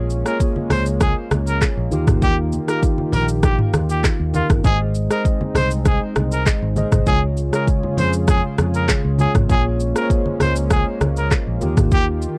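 This dry, gritty recording has the worn character of cassette tape, with little reverb around a sunny, breezy afrobeats groove at 99 BPM in a straight 4/4, set in Ab major and cut from a longer piece. An electronic afro-pop drum kit sits up front with a deep kick, warm hi-hats, handclaps, rim clicks, shaker and toms, while low-tuned congas ring very quietly beneath it under soft hands. A round, amped fingered electric bass and a mellow, clean tine electric piano carry the chords, moving through Bbm7, Ebadd9, Ab and Db before returning to Bbm7. In the background, a detuned sawtooth analog pad with chorus adds smooth, warbling, nasal sustained chords with a slow attack. Over the top, a bright pop-style trumpet with light vibrato plays the solo melody from 0.3 seconds to 12.1 seconds, staying present throughout.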